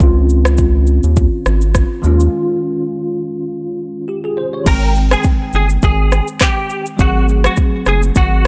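Afrobeats with a romantic, breezy mood, this short excerpt rides a lightly swung sixteenth-note feel in 4/4. A deep house drum kit sits up front with a deep kick, handclaps, rim click, shaker and crash cymbal, while a round analog bass with a fast-attack filter pluck anchors the low end in a dark, sustained tone. A bell-like tine electric piano, bright and clean with an ensemble chorus, supplies the chords, moving through Dbmaj9 and Eb9sus4, with a break at 2.3 seconds. At 4.7 seconds a direct-recorded clean electric guitar enters with a picked, twangy, scooped melody, treated with chorus and tape echo, as the harmony shifts to Abmaj7 and then Ab7b9. The whole excerpt sits in a digital ambience.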